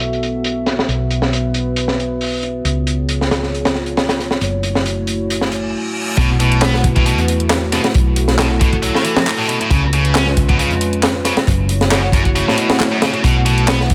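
Breakbeat excerpt at 136 BPM with a funky, playful swing, where a crunchy, saturated breakbeat kit with a high-tuned snare and a round hollow-body electric bass run under a dark, detuned analog pad that pumps with sidechain over a filter sweep, until a background reverse cymbal and impact lead into the drop at 6.2 seconds, when a bright, double-tracked high-gain guitar riff with 12-bit grit and dub echo arrives up front alongside a garage kit of handclaps and bright hats.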